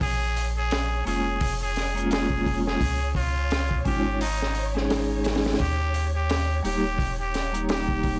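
A muted trumpet with a nasal, raspy growl carries the melody up front, its line trailed by tape echo, over a crunchy, saturated breakbeat with a high-tuned snare and punchy kick, a round, deep dub sub bass, and dark bowed strings sitting in the background with vintage 12-bit sampler grit. This dark, brooding trip hop piece moves at 86 BPM in Bb dorian with a swung sixteenth feel, cycling through Bbm7, Dbsus2 and Eb. At 1.0 seconds a vibraphone joins with metallic, ringing tones, fast motor vibrato and tape echo, all captured in a dry, gritty small-room sound.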